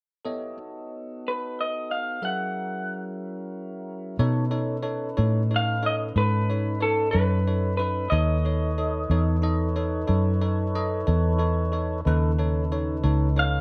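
Rolling in 12/8 at 61 BPM with a straight feel, this gritty, soulful blues sits in B mixolydian, tuned slightly sharp to A4 = 444 Hz, and is cut from a longer piece. A barky, bell-like tine electric piano opens the accompaniment at 0.2 s with a subtle chorus, joined almost at once by a mellow tonewheel organ holding round, clean chords with audible key click through a slow rotary speaker. At 1.3 s an electric guitar through a small old amp takes the melody, its picked tone slightly broken-up, compressed and lo-fi, sitting up front in the mix. A vintage muted fingered electric bass arrives at 4.2 s as the second section begins, adding a dark, foam-muted, punchy low end that is the loudest part of the arrangement. The chords move from B7 to F#7 before settling on B9, all in a dry setting with little reverb.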